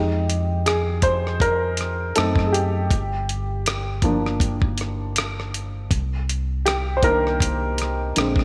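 Light digital ambience frames this sultry, introspective neo-soul R&B fragment at 80 BPM with a gentle 16th-note swing, where an intimate, up-front baby grand piano with audible action noise carries the lead over Fm9, F#dim7, Gm7 and Cm7 chords, a round, punchy, dark fingered electric bass sits underneath from the start, and a gritty, compressed sampler-style drum kit with a thumpy kick, hi-hat and rim click enters at 0.3 seconds.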